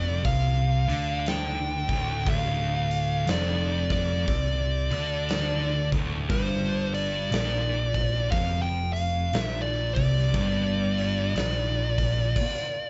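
Stoner and doom metal at a slow 60 BPM in 4/4 with a swung eighth-note feel, this ominous, heavy passage sits in D minor and is cut from a longer piece. Two thick fuzz guitars grind out the low riff, one warm and the other darker and set in the background, while an overdriven picked electric bass adds a growly, punchy bottom. A dark, compressed fuzz lead guitar carries the melody up front in a narrow upper range, heard from the start until 12.9 seconds. The acoustic rock drum kit enters at 0.2 seconds with a punchy kick, medium-tuned snare, hi-hat and crash, sounding smooth in a big room. The harmony moves from D minor to a G power chord at 6.3 seconds, and the band, playing live together in one room with moderate large-studio reverb and a dull top end, comes to a stop at 12.4 seconds.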